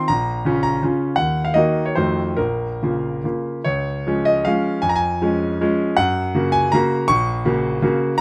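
Nostalgic and wistful, this short passage, cut from a longer romantic classical piece, is a triple-time dance in 3/4 for solo concert grand piano, with dotted rhythms giving it a lilting step. The tempo moves freely between 133 and 178 BPM under a supple rubato, and the tuning sits slightly high at A4 = 441 Hz. It opens in Bb minor, moving through Eb minor and a tense F7b9 before settling back on the home chord. At 3.6 s the music turns to Db major, passing through Db/F on to Gb harmonies. The piano spans Bb1 to Db6, its brilliant treble set against a deep bass, and it sits up front in the mix with a natural, bright tone framed by light reverb.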